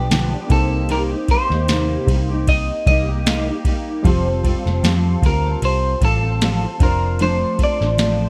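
A lightly swung groove from a soft vintage rhythm box, its deep kick, crisp snare and ride cymbal overdriven and up front, carries this wistful, mellow indie and bedroom-pop excerpt, where a dark, round, foam-muted electric bass sits beside a full-bodied fingerpicked steel-string acoustic guitar with audible finger squeak and warbly pitch drift, gentle electric-piano-like synth keys glow in the background through chorus, phaser and cassette-tape coloring, and a clean picked electric guitar sings the melody up front with analog chorus and delay over a Cm7 to Fadd9 change in a dry mix.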